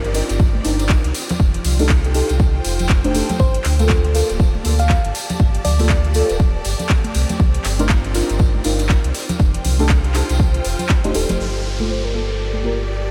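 This deep house excerpt rides a swung 4/4 groove at 120 BPM in G minor, anchored by an overdriven electronic kick that sits up front with a deep, roomy punch. Around it, an overdriven drum kit adds handclaps and metallic, filtered hi-hats, while a jingly tambourine and soft-handed, bright congas stay in the background. A full sine sub bass with an octave layer pumps against the kick, and dark, wave-folded chord stabs, treated with chorus, phaser and delay, move through Cm11, F13 and Gm9 with the same pumping motion. A clear, biting string section adds a lush bowed layer, and from 3.4 to 6.4 seconds a sparkling, bell-like FM electric piano with a warbling vintage tone plays a short melodic figure. The kick drops out at 11.0 seconds and the rest of the drums at 11.4 seconds as a downlifter sweeps in. A velvety synth lead with vibrato and diffuse ambient delay enters at 11.9 seconds, giving the warm, deep mood a smooth close.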